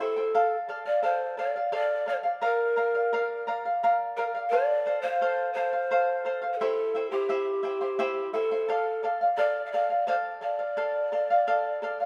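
A stone room's wet reverb hangs around this short Andean folk piece, which was cut from a longer work and played live by a small ensemble in one space. The mood is earthy and melancholic, moving at 86 BPM in a straight 3/4 in D minor. Large cane pan pipes carry the melody from start to finish, breathy and hollow, with a chiff on each tongued note and a vibrato that gives the tone a mellow, distant quality even though they sit up front. Beside them, an acoustic charango fingerpicks the accompaniment throughout, its double strings bright and shimmering, with some courses doubled at the octave for extra sparkle. The harmony cycles through Dm, Bb, F and C before returning to Dm at 8.7 seconds.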